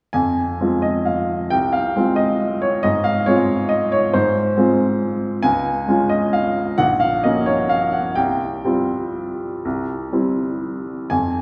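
Heard from farther back in a concert hall with a lush, lingering reverb, this short fragment of an elegant, bittersweet classical waltz in a flexible, rubato 3/4 features a bright, woody upright piano playing solo from Bb1 to Ab5, its chords moving from Fm through Db and Gb/Bb before settling on Csus4 at 8.2 seconds and C at 9.6 seconds.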